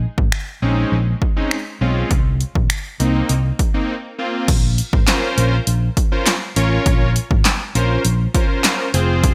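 This is a confident, driving dance-pop excerpt in Bb minor at 101 BPM in a straight 4/4, and it opens with an amped, up-front fingered electric bass sitting low between F1 and C2, its sustain pumping under sidechain compression. At 0.2 seconds a punchy analog drum machine joins with kick, snare, hi-hat, handclaps, finger snaps and crash cymbal, overdriven, with gated reverb and a short room on the snare, claps and hats. A fat, detuned sawtooth polysynth enters at 0.6 seconds in the Ab3 to Db5 range, its fast attack and sustained, warbling vintage tone filling out the chords from Bbm11 to Bbsus24. A brief break at 3.9 seconds leads into a new section at 4.5 seconds that settles on Bbmadd9. The bright 1980s-style digital production sets all three parts up front, with light reverb and a digital ambience.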